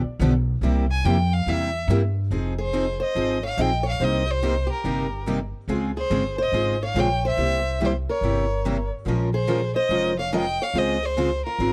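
A swung eighth-note lilt in four drives this excerpt of acoustic string swing in the jazz manouche style, and the mood is swinging and virtuosic. A woody, thumpy upright bass plucked on gut strings sits up front from the opening moment, and two picked steel-string guitars join at 0.2 seconds as accompaniment. One is a bright, full-bodied jumbo with fresh strings, and the other is a boxy parlour guitar set in the background, with finger squeaks audible on both. A bowed violin enters at 0.9 seconds with a rich, focused tone and vibrato, carrying the melody up front. At 2.6 seconds a warm acoustic archtop guitar adds a picked second line. The harmony moves through minor-seventh, major-seventh and altered dominant chords, and the dry, close sound of a small 1970s-style studio room keeps every part intimate.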